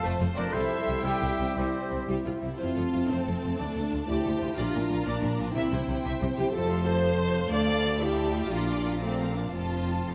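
A close, lush viola section stands out in this soaring, triumphant cinematic piece in 6/8 at 121 BPM, where two violin sections with expressive vibrato carry the melody and a second line over dark, distant French horn chords and a smooth cello and double bass foundation, while a pure, very quiet flute group, a punchy vintage oboe and clear trumpet stabs sound only until 2.1 s, set in a wet scoring-stage reverb.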